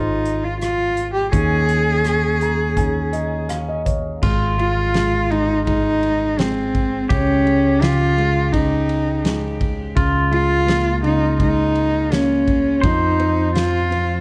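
A dusky, warm studio sound with a moderate large-room reverb frames this heartfelt, nostalgic acoustic folk-pop ballad excerpt in Ab major, moving at a straight 84 BPM in 4/4. Up front, a single bowed cello carries the woody, vibrato-rich melody, while a clean, compressed electric pedal steel guitar adds a second line with fingerpicked slide and volume swells, over a soft, felt-muted upright piano whose mellow, intimate accompaniment reveals audible action noise. A round fretless electric bass, direct and amped, anchors the low end, and from 0.3 seconds a loose indie drum kit in a pumping studio room brings a fat snare, punchy kick, rim clicks, hi-hat and dark ride and crash cymbals.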